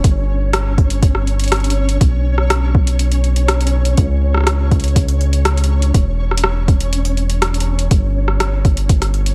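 A dry cut from a longer IDM piece at 122 BPM in straight 4/4, melancholic and intricate, built on a soft, overdriven electronic kick up front, a tape-warm analog drum machine of metallic hi-hats and rim clicks, a round, deep, ring-modulated analog bass moving between E1 and C#2 under Bsus2 and C#m/E chords, and a faint flickering, grainy granular texture with built-in reverb and sidechain pumping.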